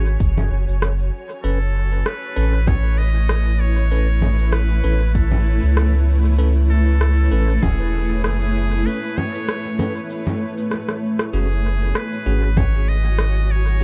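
Ambient dub at 97 BPM in 4/4, hazy and spacious, with a light swing on the sixteenths, cut from a longer piece. A round, soft sub bass sits up front, while a cloudy, evolving granular pad holds detuned, full-bodied sustained chords that move from F#sus2 to Aadd9/F# and back. A trumpet with a metal mute carries the melody as a buzzy, thin, classical-style solo with light vibrato and dub echo, and a bell-like tine electric piano adds clean, bright stabs with echo in the background. Electronic cabasa, congas and rim click, tape-warm and re-recorded in a small room, carry their own dub echo over a deep, layered electronic kick that drops out at 7.8 seconds. A break runs from 8.9 seconds, with a drum fill closing it at 11.3 seconds, and the kick returns for a single moment near the end. The production is dark and warm, with little reverb.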